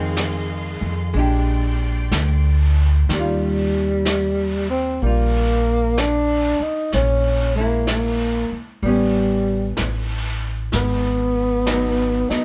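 A slow swing at 63 BPM in 4/4 carries this intimate, tender jazz ballad in Eb major, heard as a short cut from a longer piece. An upright bass sits up front with a woody, thumpy pizzicato tone on gut strings, while a clean, hollow-body archtop guitar, miked and amplified, supplies dark picked accompaniment and a vintage brush kit adds brushed snare and hi-hat from 0.2 seconds. For the opening 3.1 seconds a bowed studio string section holds sustained chords with a smooth, sul tasto sheen over Fm7 and Bb13. At 3.1 seconds the strings drop away and a breathy tenor saxophone takes the melody, its whispered subtone, scooped notes and vibrato close-miked and up front. The harmony then moves through Ebadd9, Bbm7b5, A9 and Abm7, all set in light reverb with the feel of a band playing live together in one room.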